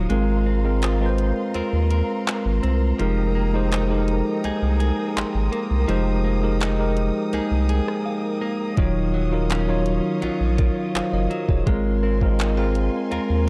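A dark, lightly reverberant production with digital ambience frames this smooth, dreamy contemporary R&B excerpt in Ab major at 83 BPM, moving through Ab69, Fm11 and Ebm9 chords. A bright, bell-like tine electric piano sits up front over a deep, saturated sine sub bass and a soft electronic drum kit of kick, rim click, handclaps and hi-hat, while a clean, compressed direct-recorded guitar picks arpeggios through delay. Distant, lush bowed strings hold sustained chords with vibrato and portamento, and a very quiet FM synth bell with chorus warbles in from 0.8 s.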